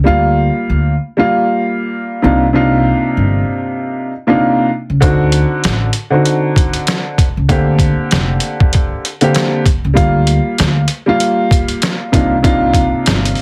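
A swung 97 BPM boom-bap groove in G minor carries this tough, moody hip hop fragment, cut from a longer piece, with a gritty, pitched-down sampler kit of thumpy kick, medium-tuned snare and hi-hat arriving up front at 5.0 seconds. Before and beneath it, an upright piano with a woody, cassette-tinged tone voices chords such as Gm7/D, Cm11, D7b9 and Bb6, while a pizzicato upright bass with steel strings adds a warm, thumpy, acoustic low end. Light reverb and a heavily compressed, radio-like sound give the whole track a close-up character.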